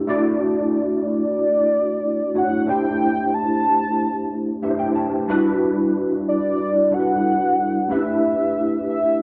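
An overdriven tine electric piano opens this glossy, urban pop excerpt in D major at 92 BPM, its barky, gritty tone pushed through a combo amp and thickened with ensemble chorus as it voices Dmaj9, C6, Em9 and A7sus4 chords. At 1.1 seconds a velvety synth lead enters up front with the melody, its detuned sawtooth and triangle unison sustained with chorus and vibrato. The piano adds a fill at 4.3 seconds, all captured in a dry, close 1970s-style studio sound with a moderate booth ambience.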